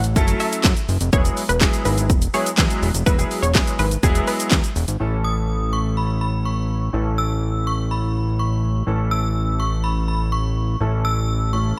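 Bright, 1980s-style digital ambience frames this energetic, driving dance-pop excerpt at 124 BPM, tuned slightly low to A4 = 438 Hz. It opens on a drop in which an overdriven, punchy house kit with cracking snare, handclaps, shaker and bright hats sits up front beside a fat, saturated analog bass that pumps with the sidechain. A clear, intimate grand piano with audible action noise and long sustain carries the F#m7 and Eadd9 chords through analog chorus, while a lush, detuned unison pluck plays a short delayed melody. The drums stop at 5.0 seconds as the harmony settles on A, and an inharmonic FM synth chime with tremolo and delay takes over the melody from 5.2 seconds above the continuing bass and piano.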